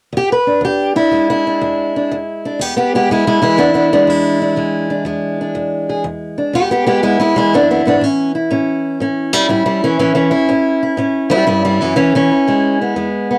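Captured at home on cassette in a booth with moderate ambience, this excerpt of acoustic country blues puts a single fingerpicked steel-string parlour guitar up front, its fresh strings bright against a boxy body, with finger squeak audible. The playing has a laid-back, swaggering swing, moving from E7 to A7 at 8.0 seconds and settling on E at 12.0 seconds before the cut at 13.4 seconds.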